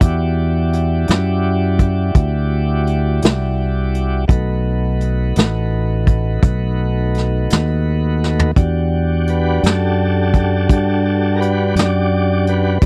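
A slow 12/8 blues at 56 BPM moves with a straight, unhurried feel in E minor, its mood mournful and soulful, in an excerpt from a longer piece. A vintage brush drum kit sits up front with a tight kick, a medium-tuned snare, hi-hat and toms, its brushed sound mid-forward with a rolled-off top, and a drum fill at 8.2 seconds leads into the second section. Beneath it, a fingered electric bass lays down a round, dark, punchy line in the low register. A tonewheel organ holds smooth, clean sustained chords through a slow rotary speaker, with audible key click, moving from Em9 to B7 at 4.3 seconds and back to Em9, where it steps forward into a solo from 8.6 seconds. The whole is a dry, close recording in a small room, with a 1970s studio intimacy.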